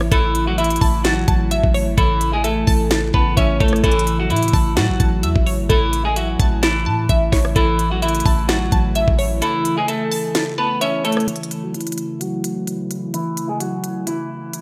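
Dreamy and wistful, this excerpt of half-time trap-flavored hip hop moves at 129 BPM in A major, with a tuning slightly above standard. A semi-hollow electric guitar carries the melody up front, its clean, picked hollow-body tone softened by a low-pass filter and trailed by digital delay. Beneath it, a glassy wavetable pluck adds crystalline, bright accompaniment with chorus, while an airy, breathy pad holds sustained chords with a slow attack, long release and mellow detuned shimmer. A deep, boomy 808-style bass anchors the low end until 9.4 seconds, and the tape-tinged trap kit sits up front with a knocking kick, sharp snare, crisp hats and rim clicks, the kick dropping out between 9.4 and 11.3 seconds. At 11.3 seconds the pluck falls away and a filter sweep carries the closing section, all set in a light reverb.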